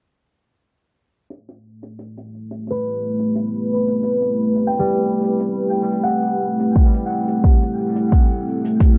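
Ambient dub with a hazy, spacious mood, this short section of a longer piece rests on a steady, straight pulse and a single Am9 chord. A brushed acoustic hi-hat opens at 1.3 seconds, sitting naturally in the background with a small-room feel. A deep, moody pad of detuned sawtooth and sine voices with a sub octave arrives at 2.3 seconds, its slow attack and long release giving mellow sustained chords that sit up front, thickened by chorus and its own reverb. Soon after, a fingerpicked concert harp rings out in arpeggios through a low-pass filter and dub echo, with a filter sweep shaping its tone. An overdriven, layered electronic kick joins up front at 6.8 seconds, adding a heavy low thump. The production is dark and warm, with light reverb, a small room ambience and a filter sweep across the mix.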